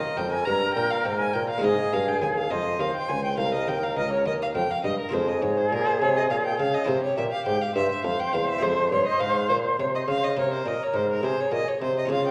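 A dark production in a reverberant recital hall gives this short cut from a longer piece a soft, enveloping glow. It is a baroque-style sonata movement with continuo in 12/8, flowing and introspective, moving at 69 dotted-quarter beats per minute with a rubato feel. Up front, the violin carries the melody with a reedy, gut-string period tone. The concert flute sings a distant, airy second line with expressive vibrato and tongued notes. The buff-stop harpsichord supplies a muted, lute-like plucked accompaniment in Italian style, and the mellow bassoon joins at 0.2 s as the solo bass voice. The harmony moves from Eb7 to Ab, then through Fm and C7 before settling back on Fm.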